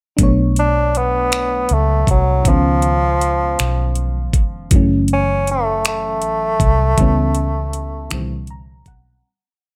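Opening at 0.2 s with a knocking electronic kick, metallic hi-hat and finger snaps over a round, foam-muted fingered electric bass sliding through chromatic approach notes and a mellow FM electric piano holding rootless, chorus- and phaser-tinged chords, this sultry, late-night slow six-eight R&B piece in B minor at 53 BPM brings in an up-front bassoon with light vibrato and plate reverb at 0.6 s for a classical-style, motif-based melody of call phrases, before fading out from 7.0 s as the electric piano adds a short closing fill.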